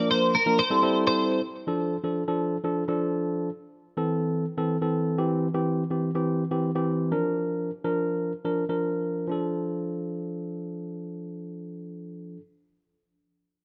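Pop at 124 BPM in D minor, tuned to A4 = 435 Hz, this confident, driving fragment opens with a bright, twangy, compressed twelve-string electric guitar picking an up-front melody through analog chorus and tape echo until 1.4 s, while a clean tine electric piano heard through a combo amp carries the accompaniment to 12.4 s over chords moving from Bb and Am7 to Dm, Am, C and Bb, all set in a moderate echo chamber reverb.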